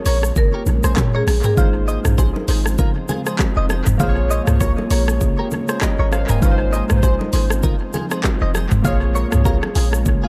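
Swung sixteenths at 99 BPM drive this sunny, joyful afrobeats excerpt in Ab major, with an up-front electronic kit of deep kick, dark hats, handclaps, rim clicks, shaker and toms sitting over a boomy, sine-toned 808 bass, while congas and bongos ring bright and acoustic in the background. A twangy, compressed clean guitar riff with chorus and tape echo runs throughout, a woody marimba line flickers only from 0.1 to 1.6 seconds, and warbling vintage analog keys with chorus and echo alternate Bbm7 and Ab6 over an ethereal, detuned pad held in the background. The mix is lightly reverberant and heavy with echo.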